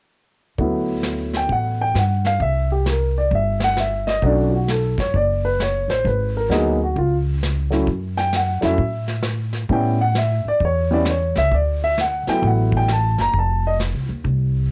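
A jazz piano trio swings with a sophisticated ease in this short passage cut from a longer piece. A woody upright piano sits up front carrying the melody from 0.6 seconds, dropping out at 13.8 seconds while the others carry on to the end at 14.7 seconds. Beneath it, a thumpy pizzicato upright bass with steel strings holds the low end, also close and present. A vintage drum kit played with brushes fills out the groove with snare, hi-hat and a punchy kick, its rolled-off top and cassette tape coloring giving it a small-room, slightly faded character. The harmony moves through rich extended chords such as D69, Bm9 and G#m9, with a brief break at 7.0 seconds before settling back onto D69. Light reverb and the dull, lo-fi sound of a home cassette recording lend the whole piece an intimate, vintage feel.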